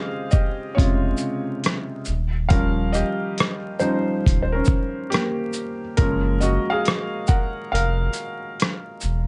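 A muted, mellow felt-piano solo with audible action noise, cassette-tape softening, low-pass filtering and plate reverb drifts through Dbmaj9#11, Eb9 and Gbmaj7 in this nostalgic, melancholic lo-fi hip hop excerpt at 69 BPM with a 66% swing on the 16ths, joined at 0.3 seconds by a gritty, overdriven 12-bit sampler-style kit of thumpy kick, hi-hat, rim click and shaker re-recorded in a small room, and at 0.8 seconds by a deep, sustained sine-and-triangle sub bass with octave, all over vinyl crackle and light reverb before a break at 7.7 seconds.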